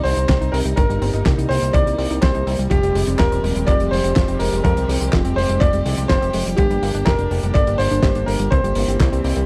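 Italo disco at 124 BPM in a straight 4/4, this danceable, nostalgic passage in F dorian is cut from a longer piece and moves through Cm, Fmadd9, Gm and C7. A vintage concert grand piano sits up front with the melody, its smooth, long-sustaining tone carried by tape echo, while a dark chamber string section holds soft-attack, sul tasto chords with light vibrato underneath. In the background an analog pluck spins detuned sawtooth arpeggios, bright and round with chorus and tape echo of its own. A fat, saturated analog bass anchors the low end with a thick, detuned sawtooth sound, and a damped 70s kit adds handclaps, hi-hat and a smooth, fat snare from 0.1 seconds. A gritty, thumpy sampler-style kick enters at 0.3 seconds, and the whole passage has the dry, close feel of a 1970s studio with little reverb.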